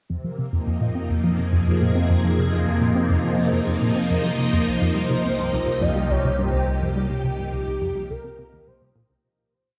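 Ambient, sequencer-driven space music with an expansive, hypnotic mood, built on a tight, nasal sequenced synth riff whose 7-step loop drifts against the bar under a filter sweep, with a cassette-tape tint and delay, while a phased string machine spreads swirling, vintage chords up front and an analog drone enters at 0.9 s with a mellow, evolving root bass. At 4.7 s, as the harmony moves from F minor to C minor, an expressive portamento lead joins with warbling, wave-folded arch phrases, vibrato and delay. Wet concert hall reverb wraps the dark, warm production of this short piece, which fades out from 6.2 s to its close at 9.2 s.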